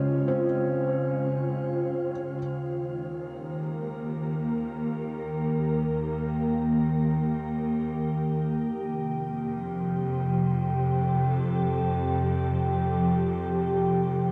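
A serene ambient fragment opens on a full-bodied, glassy FM pad holding slow-attack chords through ensemble chorus and phaser, with a soft, felt-muted upright piano playing intimate arpeggios through tape echo until 2.4 s over a pure, ethereal glass harmonica texture; from 2.4 s the harmonica fades up alongside a clear, biting bowed cello section with vibrato carrying the bass, the whole piece steeped in a huge, wet reverb and cassette-tape character, with shimmer reverb on the pad, piano and harmonica.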